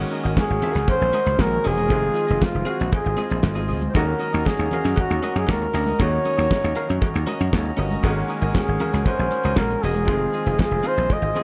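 A dry, punchy thumbed slap bass and a bright, clean electric guitar open this short disco cut, joined at once by a very quiet baby grand piano with audible action noise and a reedy, nasal harmonium holding sustained chords in the background. A damped 70s drum kit comes in at 0.1 seconds, its fat snare and tight kick sitting up front with the hi-hat, and the bass stays just as forward, foam-muted and direct. At 0.4 seconds a breathy flugelhorn takes the solo melody, soft in attack with light vibrato and a whispered, intimate tone, trailed by tape echo. Congas with thick skins and soft hands, along with a metallic, band-limited vintage cowbell, enter at the same moment, both kept very quiet. The harmony moves through Ab9sus4, Fm7 and Ebm7 before circling back, giving the danceable, driving groove a smooth, mellow lift within light reverb and small-room ambience.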